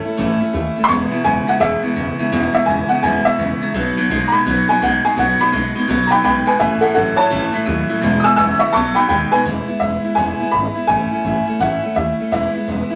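Rockabilly with an upbeat, retro swing feel, this clip from a longer piece is led by a dark upright piano that takes a solo through the first 9.5 seconds, its mellow, worn and slightly detuned tone sitting up front with a boxy, short sustain. Underneath, a picked steel-string acoustic guitar plays a bright, full-bodied jumbo accompaniment from start to finish. An upright bass with gut strings adds a woody, thumpy pizzicato low end. At 0.9 seconds an electric guitar at the edge of break-up comes in with a twangy, compressed riff bathed in spring reverb, dropping out at 9.4 seconds as the music moves into a new section. The whole band sits in a moderate studio reverb.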